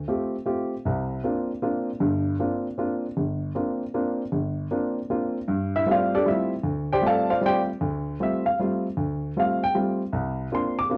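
A swung jazz waltz in 3/4 at 155 BPM, this searching, cool fragment in G dorian features a solo baby grand piano, intimate and up front, with audible action noise and short sustain, spanning G1 to D6 and tuned to A4 = 439 Hz. Its harmony circles between G9sus4 and C9sus4, with a new section starting at 5.5 seconds. A moderate studio reverb surrounds the piano, and the sound carries the worn, warbling character of old cassette tape, its pitch drifting.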